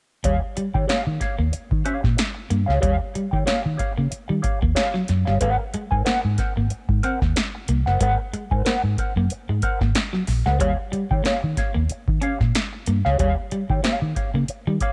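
A dry funk clip at 93 BPM in Eb mixolydian, with a gritty, playful mood and a light 16th-note swing, moving from Eb9 to Ab9 at 5.4 seconds and back at 10.6 seconds. An analog drum machine up front supplies a deep kick, punchy snare and metallic hats, while a vintage fingered bass, foam-muted, dark and round, anchors the low end. A mellow, clean electric guitar with wah plays the accompaniment, and a second, picked guitar at the edge of break-up repeats a slightly broken-up riff beneath it.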